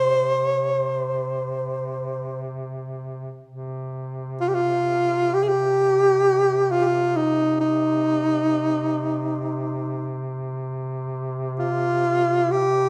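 Caucasian folk in the manner of a lament, unfolding in free time in C minor with a mournful, longing mood. A mellow alto saxophone carries the melody up front and close-miked, its classical-style line sung with vibrato between Eb4 and C5. Beneath it a duduk holds a low C3 drone from a distance, roomy and folk-styled with vibrato and scooped notes, the pair bathed in a moderate recital hall reverb across this short 12.9-second fragment of a longer piece.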